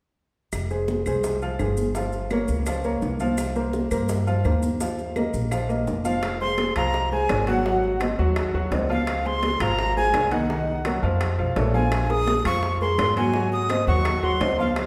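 A breathy, bright jazz flute carries the melody up front from 6.0 seconds, its straight tone and crisp, chiffy attack giving it a reedy edge high in its range. This is a danceable, passionate salsa excerpt in F minor at 169 BPM, moving through chords such as Fm, Gm7b5, Ab7, Dbmaj7 and Bbm9. A clear, somewhat worn concert grand piano supplies the accompaniment near the front with short sustain and deep bass, while a dark, thumpy gut-string upright bass, plucked pizzicato, anchors the low end with a woody tone. In the background sit high-tuned congas with a thin, band-limited vintage skin, tight bongos played with soft hands, and dry, woody claves, joined early by grainy maracas that stop at 6.2 seconds as ringing metal-shell timbales come in. The whole piece is bathed in the wet reverb of a recital hall, lending the dance groove a spacious, resonant sheen.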